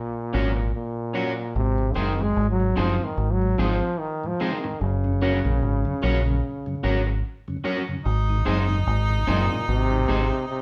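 Reggae with an uplifting, laid-back mood, this short excerpt from a longer piece rides a relaxed swung groove over chords moving between Gb and Ab. A clear trombone with light vibrato and a smooth top carries the melody up front from the very start, while a deep, round dub bass, fingered and direct, sits prominently beneath it. An electric guitar at the edge of break-up, picked and twangy, fills out the accompaniment, joined at 1.8 seconds by a mellow tonewheel organ in the background, its dark, clean tone marked by key click and a slow rotary speaker. Near the close, at 8.0 seconds, a breathy tenor saxophone slips in with a whispered, intimate second line on a single note. The band sounds as if playing live together in one room, wrapped in a wet studio reverb.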